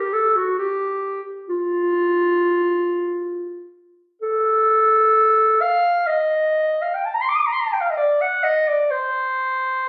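A lone clarinet opens this short fragment of a longer classical piece, its mellow tone sounding both close at hand and strangely distant. Playing unaccompanied and in a free, expressive rubato, it drifts around a slow pulse of roughly 61-68 BPM in 4/4. The line spans from F4 up to Eb6, giving the solo a meditative, lonely character that lingers in the air. A moderate studio reverb with a 1.1 s decay surrounds the instrument, lending it a roomy glow. The phone captured the performance from within the room, and the whole passage lasts just under 10 seconds.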